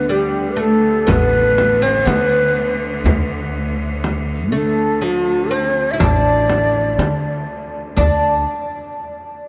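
Stately and festive, this excerpt from a longer Arabic maqam ensemble piece in 10/8 sets a breathy, reedy ney up front on the melody over a bright, woody oud second line, a plucked upright bass and a biting, intense bowed cello drone, with a soft-handed, vintage frame drum joining in the background at 1.1 seconds, all ringing out in a vast, echoing cathedral space.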